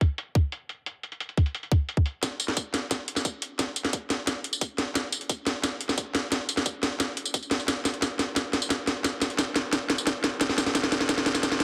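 From the first moment, an overdriven electronic kick and a layered drum kit of hi-hat, snare and tambourine arrive together, setting a dark, mechanical drum and bass groove in a straight 4/4. The tight kick sits up front with a gritty edge, shaped by a high-pass filter. The kit is also up front: a cracking snare and metallic hats, both low-pass filtered, along with filtered tambourine and the small room it was re-recorded in. At 2.2 seconds a build-up and drum fill begin and carry through to the end at 11.6 seconds. A moderate plate reverb adds a 1.6-second tail, and the dense, heavily limited modern master gives this fragment of a longer piece a compact, relentless punch.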